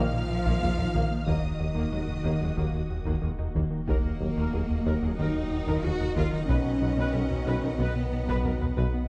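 A cinematic hybrid of orchestral and electronic film scoring in Eb minor at 92 BPM, this brooding, vast excerpt moves from an opening Eb5/Bb chord into Ebm and later Badd9, with a lush symphonic violin section carrying the melody in the background while a close studio violin section adds an expressive second line with portamento, and rich violas, a focused cello section, distant double basses and a punchy tuba fill out the middle and low end. A dark, very quiet French horn section, a mellow trombone section and a glassy, ethereal FM pad hold sustained chords, as a tight, driving sequenced synth arpeggiates, a round analog bass plays a riff, and a pure sine sub bass anchors the bottom. Heavy-stick taiko drums enter at 0.5 seconds, and a moderate scoring-stage reverb gives the dark production its sense of space.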